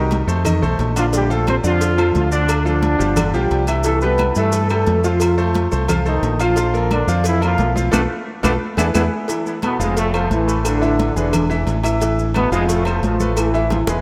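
A round, punchy fingered electric bass sits up front in this driving, danceable salsa at 176 BPM, beneath a tight trombone section carrying the melody with light vibrato and a diffuse ambient delay, a brilliant grand piano comping with short sustain, background layers of high-tuned congas, ringing agogo bells and timbales and woody claves, along with very quiet cowbell and bongos and grainy maracas, the dreamy mix soaked in plate reverb as a band accent and drum fill lead into A harmonic minor at 9.3 s.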